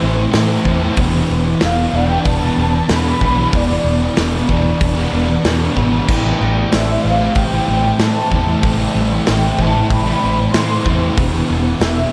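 A velvety, detuned sawtooth synth lead carries the melody from 1.6 seconds, its smooth, sustained tone colored by chorus, vibrato and delay in this brooding, melancholic stretch of shoegaze and dream pop at 94 BPM in A minor. Beneath it, a thick, distorted fuzz guitar plays a low riff through analog chorus, while a crunchy overdriven guitar plays its own riff trailed by reverse reverb. In the background, a shimmering, octave-doubled twelve-string acoustic guitar picks arpeggios through lush chorus and delay. A foam-muted, fingered electric bass adds a round, punchy low end, and a loose indie drum kit enters at 0.3 seconds with a tight kick, medium-tuned snare and dark cymbals in a small, pumping room. The harmony moves from A minor to E7sus4, shifts to Am7 at 6.1 seconds and turns to an E7 lacking its third at 11.2 seconds, all soaked in a dreamy hall reverb.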